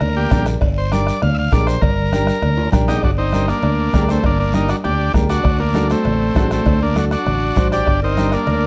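A dark, softly reverberant production frames this fiery, passionate cumbia, cut from a longer piece. A vintage, buzzy combo organ sits up front with a light vibrato, carrying the melody in a solo that opens the passage before a drum fill at 2.6 seconds leads into a new section at 3.0 seconds. Beneath it, a round, dark fingered electric bass anchors the low end, while a close, dry bombo with a soft beater drives the groove alongside congas with a thin skin, ringing metal-shelled cowbell and timbales heard from a distance, and a faint, raspy guiro. A brilliant, woody upright piano adds open accompaniment in the middle register. At 7.7 seconds a gritty, growling clarinet slips in behind the band with scooped notes and jazz-style vibrato for a brief second line.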